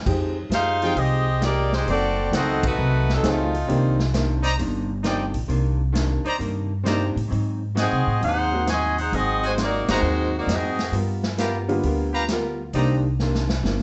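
Big band swing in C minor, this short excerpt moves at 132 BPM with a sultry, brassy mood and a firm swing on the eighth notes. A woody, thumpy upright bass with gut strings sits up front, plucked throughout, while a distant, roomy drum kit with a punchy kick, medium-tuned snare, hi-hat, ride and crash keeps time and closes with a fill from 13.2 seconds. The bright saxophone section carries the melody in two phrases, entering at 0.5 seconds and returning at 7.8 seconds, as a clear trumpet section with light vibrato and a soft attack adds tight stabs, and the whole band hits accents at 2.6 and 9.8 seconds. A brilliant upright piano accompanies in two stretches, and a dark, clean, picked hollow-body electric guitar, compressed and tucked in the background, accompanies beneath the horns. The harmony runs from Fm9 through F#dim7, Cm9, Ab7 and G7#9 before settling back on Cm9, all set in a moderate large studio reverb with a rolled-off top end.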